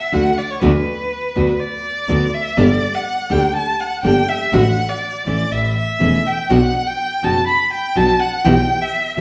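An expressive bowed violin leads this melancholic, passionate tango fragment, singing up front with warm vibrato and portamento in a loose, rubato feel. Beneath it, a bright, full-bodied nylon-string guitar is fingerpicked with audible finger squeak, while a bowed double bass adds an earthy, distant low end with light vibrato, moving through chords such as D, Gmadd9 and Bm. The trio plays live in one stone room whose reverb lends a wet, echoing space, and vinyl crackle gives it an old-record patina.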